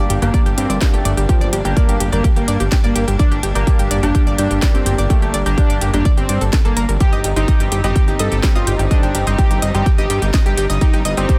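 Bright, intense studio strings hold sustained chords very quietly from the start, alongside a round analog pluck playing arpeggios through chorus and tape echo, edgy polysynth stabs with a nasal oscillator-sync sweep sitting in the background, and a fat, detuned sawtooth bass pumping up front. This hypnotic, dark melodic techno excerpt in G minor runs at 126 BPM in a straight 4/4. A house kit of cracking snare, crisp hats and toms enters at 0.1 seconds, a thick, bold unison lead joins at 0.2 seconds carrying the melody with vibrato, lush chorus, cassette tape character and digital delay, and a punchy, up-front kick arrives at 0.3 seconds, as the harmony moves from Gm to Cm/G at 7.0 seconds in a dense, heavily limited mix.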